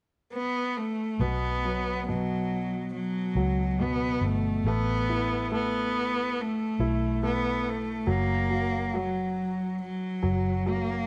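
A slow, straight 4/4 pulse at 70 BPM underpins this heartbroken, emotional pop fragment, where a close, nasal bowed cello with vibrato carries the melody from 0.3 seconds under a slapback echo, joined at 1.2 seconds by a clear, polished baby grand piano and a dark, round, foam-muted electric bass as the chords move from Bsus2 through Asus2 to F# in a small room with light reverb.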